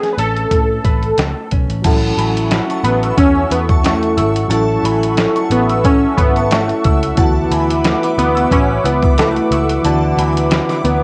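Lightly reverberant and steeped in cassette tape, this home-recorded fragment of a longer piece is nostalgic, sunny indie bedroom pop with a gently swung lilt. Up front, a round, detuned sawtooth analog keyboard carries the melody with chorus and a filter sweep, beside a gritty, compressed sampler-style drum kit whose thumpy kick, medium-tuned snare, hi-hat and crash sound re-recorded in a large room. A small fingerpicked nylon-string guitar with audible finger squeak and a warbly pitch drift picks out the harmony, while a reedy electric piano with fast tremolo sits in the background as if heard through its built-in speakers, and a dark, foam-muted picked electric bass adds round, tube-saturated low end. At 1.8 seconds the chords move from Amaj9 to A6, and a smooth, wave-folded analog pad with a sub octave swells in slowly beneath a bright, shimmering FM bell line that glows with ensemble chorus and analog delay. 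The harmony settles on D69 at 7.2 seconds, leaving a hazy, sun-faded glow.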